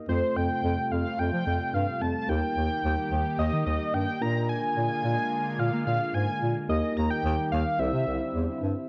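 A straight 4/4 pop groove sets a wistful yet upbeat mood in this short cut from a longer piece, with a dark, breathy bass clarinet carrying the bass up front with jazz-style vibrato and a punchy attack. A mellow tine electric piano comps cleanly beneath a thick, bold unison lead whose detuned, wave-folded tone is touched by ring modulation and tape echo, while a swirling phased analog pad holds bright, slow-blooming chords with chorus. The whole sits in light reverb on worn, warbling old cassette tape with drifting pitch, moving from Fadd9 through Eb and Bb7 to close on Cadd9.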